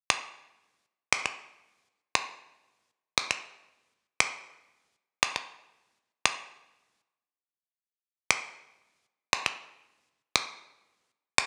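Pop in a straight 4/4, euphoric and upbeat, this short cut from a longer piece features a single part: electronic finger snaps serving as the drums. The snaps enter at 0.1 seconds and carry through to 11.5 seconds, sitting up front with an electronic, produced character. A brief break arrives between 6.8 and 7.8 seconds, after which the music moves into a new section. Light reverb gives the snaps a touch of space. The whole has the feel of a rough home demo mix, raw and unpolished.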